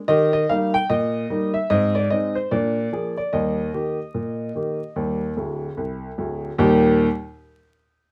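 A clear, woody upright piano opens this cheerful, lively ragtime excerpt in Eb major, playing solo at 74 BPM in 2/4 with a swung sixteenth-note feel and sounding up front, smooth and vintage, with long sustain across a range from D1 to G5. The harmony moves from Eb through Ab and Bb7 back to Eb. A piano fill runs from 5.4 to 6.6 seconds before a new section begins, all set in light reverb with vinyl crackle and a tuning of A4 = 436 Hz.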